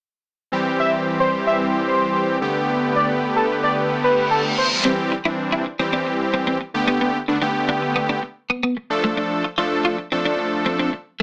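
Heard through a small-speaker sound in a moderate studio room, this bittersweet, driving pop excerpt opens with a fat, detuned sawtooth polysynth up front over a lush, warbling vintage pad in the background, both treated with chorus. A nasal, retro octave-doubled lead carries the melody with vibrato, chorus and tape echo, and a reverse cymbal enters at 4.0 seconds. At 4.8 seconds the pad and lead have stopped and a clean, compressed electric guitar enters with a picked riff through ensemble chorus, playing alongside the polysynth over chords moving from C to Gadd9 and on to Dm.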